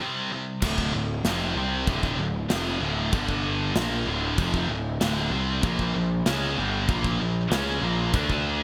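This heavy metal excerpt opens with a scooped, high-gain guitar riff heard alone for the first 0.6 seconds, its distorted, double-tracked tone bright and up front. At 0.6 seconds the fuzz-laden picked electric bass and a big acoustic rock drum kit enter together, setting a straight 4/4 pulse at 96 BPM in D minor. The bass growls with overdrive in its low register, while the kit's punchy kick, medium-tuned snare and crash cymbals ring out through gated reverb. The harmony moves from a C5 power chord into D minor, touching G5 and Bb5 along the way, giving the short passage a heavy, epic mood. Light reverb and small room ambience frame a bright 1980s-style digital production, and the clip, cut from a longer piece, ends at 8.6 seconds.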